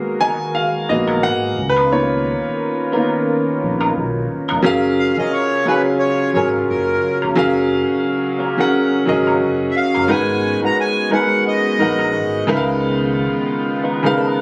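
Soulful and warm, this neo-soul R&B piece moves at 88 BPM in F# major with a swung sixteenth-note feel, cut from a longer performance. A clear concert grand piano sits up front with long sustain, joined from the start by a smooth, detuned analog pad with chorus in the background and a clean, picked electric guitar with wah, while a round, dark analog bass enters at 0.9 seconds. At 5.0 seconds a reedy accordion with slow beating takes the melody over chords moving from F#maj7 back to G#m9 and C#13, the recording captured on a phone in the room with compression.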